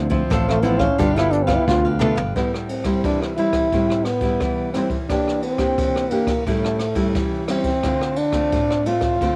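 A breathy, vibrato-laden trombone leads from 0.5 s, up front with scooped notes in a jazz style, over a fingerpicked classical nylon-string guitar in this bittersweet, yearning samba-and-choro fragment in A minor at 88 BPM, with both carrying a cassette-tape character. A crisp, bright picked cavaquinho and a round, punchy electric bass fill out the opening before both stop at 2.3 s, while a brushed jazz kit with dark cymbals, a high-tuned snare, a boomy kick and a rolled-off top plays throughout and adds a fill into the next section. The chords move from Dm9 and G9 to Am7, Em7b5, A7 and Dm7, all set in studio reverb with the homespun feel of a cassette recording.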